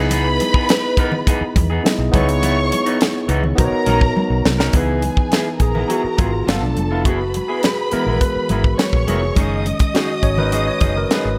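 Lush 1970s-style soul in C# dorian at 104 BPM, smooth and silky, cut from a longer piece, where a dry, up-front funk kit with a high-tuned snare and tight kick and a dark, round, foam-muted fingered bass underpin a barky, gritty overdriven tine electric piano, a twangy, slightly broken-up guitar riff, softly damped congas in the background, and a bowed string section with vibrato, portamento and tape echo, until a drum fill at 4.2 seconds leads into an electric piano solo from 4.7 seconds over chords moving from C#m7 through G9 and F#9sus4.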